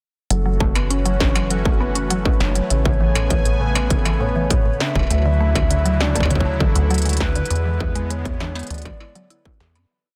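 A broken, distorted electronic kick sits up front at 100 BPM in straight 4/4, while an industrial drum kit of crisp hi-hats, clanging snare and struck metal weaves a glitched, ever-changing beat, both kit and kick re-recorded in a small room. This is a glitchy, intricate IDM piece moving through F#m7, Amaj9, Dmaj9 and E7. Underneath, a rubbery, saturated acid bass plays long gliding notes with a resonant, plucky filter. A woody, mallet-like FM pluck repeats a 7-step arpeggio loop that drifts against the bar, while a smooth, detuned sawtooth pad holds sustained chords with chorus, tremolo and sidechain pumping. On top, a warbling, nostalgic lead with vibrato and dub echo sings motif-based arch phrases, and from 1.0 s a bubbling, resonant stepped-filter texture holds a high note in the background. The mix is dry, dense and heavily limited, and the whole piece fades out from 6.7 s.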